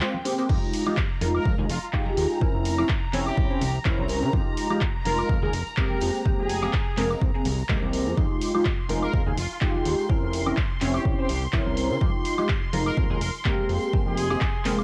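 A swung groove at 125 BPM drives this groovy, funky filtered disco house cut in F minor, taken from a longer piece, with a dry, punchy electronic kick sitting up front from 0.5 seconds and an analog drum machine supplying handclaps, hi-hat, woodblock and crash, its hats, percussion and cymbals pumping against the sidechain. A very quiet layer of tambourine and congas adds soft-handed, compressed, saturated warmth underneath. The foreground belongs to a funky, detuned sawtooth polysynth comp with filter plucks, a moving notch, chorus and phaser, sidechain pumping and a mellow, evolving character, joined at 0.5 seconds by a fat, thick analog bass with a filter sweep that also pumps. High above, a dark, woody violin section holds lush, distant bowed chords played sul tasto with vibrato, while from 1.3 seconds a tight, vintage-sounding trumpet section carries a clear melody in a narrow pop-style range. 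The harmony circles through Fm9, C7b9/F and Abmaj9/F over an F pedal, and the whole mix carries light digital reverb and the slightly worn character of a home cassette recording, with tape coloring most of the parts.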